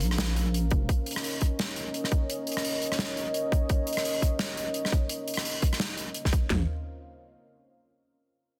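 Half-time drum and bass at 171 BPM in Bb minor, this short cut from a longer piece feels cinematic and spacious, with a swung sixteenth-note lilt over a half-time 4/4 pulse. A dark analog pad holds sustained Bbmadd9 harmony through the opening 6.7 seconds, its detuned sawtooth and sub-octave tone softened by a slow attack, long release, chorus and sidechain pumping. A deep, soft wobble bass sits up front with a rounded sine-and-triangle body, sounding only in brief bursts at the very start and again near 6.5 seconds. Two drum kits share the groove: a gated 80s acoustic kit with an airy, polished stone-room character supplies hi-hat, rim click and a medium-tuned snare from the outset, while an electronic, layered drum and bass kit joins at 0.7 seconds with a tight kick, cracking overdriven snare and toms. The mix carries light reverb and studio ambience within a dense, heavily limited modern master.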